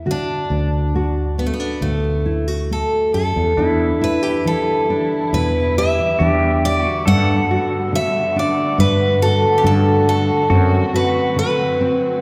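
An acoustic folk-pop ballad, reflective and heartbroken, cut from a longer piece and heard in the lingering reverb of a church. A fingerpicked nylon-string guitar with a full-bodied, deep classical tone and a direct fretless electric bass open the passage beneath an up-front picked steel-string acoustic guitar carrying the melody, finger squeaks audible on both guitars, and the bass drops out at 10.8 seconds. At 3.6 seconds a twangy, compressed pedal steel guitar enters with slide and volume swells as a quiet second line, alongside a distant chamber string section holding dark, bowed chords with vibrato.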